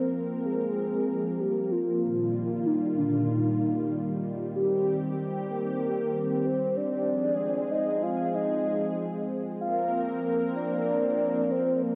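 Cinematic and driving, this synthwave excerpt moves at 95 BPM in a straight 4/4, tuned slightly below standard pitch, and is cut from a longer piece. A soft, octave-layered synth lead carries the melody throughout its 11.9 seconds, its round, dark tone built from triangle, sawtooth and sine layers with a sub octave, touched by vibrato and coloured by chorus, tremolo, delay and a cassette-tape character. Beneath it, a lush unison pad holds sustained chords across the whole stretch, its detuned sawtooth voices thick and nasal yet bright and up front, with a slow attack, long release and chorus. A filter sweep runs across the pad for the full length, while the harmony moves from Bbsus2 through Ebadd9/Bb, Cm and Fm before returning to Bbsus2 at 9.6 seconds. A moderate, lush hall reverb with a 2.4-second decay gives the sound a spacious, cinematic depth.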